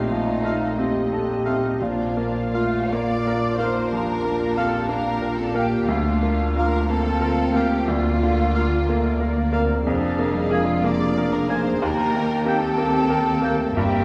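In a rubato lilt of 12/8, this lyrical, passionate romantic excerpt for piano and orchestra sets a clear baby grand piano on the melody, joined there by veiled, muted violins in the background, while a second muted violin section, a dark, distant clarinet, a pure-toned small flute group and a clear oboe weave second lines, and muted violas and a very quiet bassoon fill the accompaniment over mellow French horn chords and a bass of muted cellos and rich, lush double basses, all heard from further back on a scoring stage.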